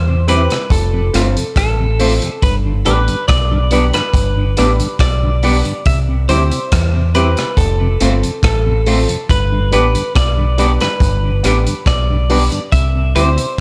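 Roots reggae at 70 BPM in G mixolydian with a sunny, warm mood, where a round, dark fingered bass sits up front beside a gritty, saturated breakbeat kit of tight kick, hi-hat and rim click, while a clean picked electric guitar carries the dub-echoed melody over a compressed second guitar soaked in spring reverb and dub echo, woody, slightly detuned upright piano stabs and a mellow tonewheel organ with chorus vibrato, key click and slow rotary speaker tucked in the background, all cycling through C, F and G in a small room.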